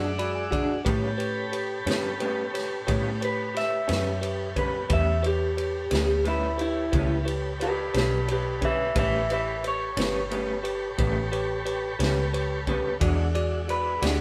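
Soulful and rollicking, this slow blues in a straight 12/8 feel is a short section cut from a longer performance, played by a band live together in one moderate stone room. A bell-like, bright tine electric piano opens with a brief fill in the first second, while a muted fingered electric bass sits up front with a round, dark tone and a vintage drum kit comes in at 0.2 seconds with a punchy kick, medium-tuned snare and dusky ride cymbal. An accompanying electric guitar through a small old amp sits up front with a warm, slightly broken-up, lo-fi texture with tremolo, and a tonewheel organ holds smooth, clean sustained chords through a slow rotary speaker. From 3.2 seconds a second electric guitar through a small old amp takes the melody, its picked, dark, compressed voice sounding louder than the rest of the band. The harmony moves between E9 and A9 chords, returning to E9 at 13.0 seconds.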